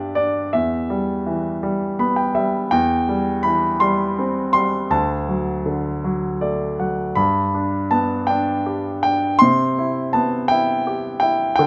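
Classical solo piano, tender and warm, unfolding in 6/8 with a free, rubato feel. A grand piano with a polished, present tone sits up front, spanning D2 to C6 as it moves through G, E minor, C and D before settling on a Cmaj7, with brief fills at 1.6 and 6.0 seconds. Close, detailed miking and light reverb keep this short passage from a longer piece intimate.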